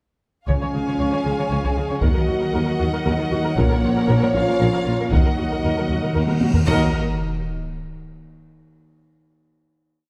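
Awash in a wet scoring-stage reverb, this brief, dark and epic orchestral film cue in Eb minor moves at 78 BPM in a straight 6/8, with a vibrato-rich violin melody over a distant second violin line, portamento violas driving a rhythmic ostinato, dark French horns, a soft string pad and mellow trombones sustaining chords, and a clear cello ostinato doubled by a woody double bass section and a quiet tuba, all propelled by single big strokes from a hard-stick taiko ensemble, joined at 5.1 s by rolling timpani and at 6.3 s by a huge, bright cymbal swell that lands on a final chord and low sub-drop impact at 6.7 s.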